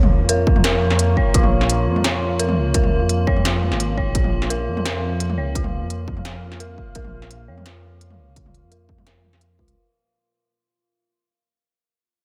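This half-time drum and bass excerpt in Bb minor at 171 BPM opens at once on a Bbm chord: a deep, moody ambient pad sits in the background with slow-attack, detuned sawtooth and sub-octave layers, chorus, reverb and sidechain pumping, while a barely audible downlifter passes by in the first 1.3 seconds. An eerie, inharmonic FM synth bell plays decaying arpeggios, roughened by 12-bit sampler grit, low-pass filtering and dub echo, with a filter sweep running across its whole length. Underneath, a rumbling, beating detuned saw bass holds the low end up front, and a metallic, inharmonic drone on F4 hangs quietly in the mix with chorus and reverb. An industrial kit of clanging snare, crisp hats and toms drives the half-time feel from the start, and a heavy electronic kick joins at 0.5 seconds, both kits re-recorded in a large room. The cinematic, dark mood stays on a single section, fading out over the full 9.8 seconds under light reverb.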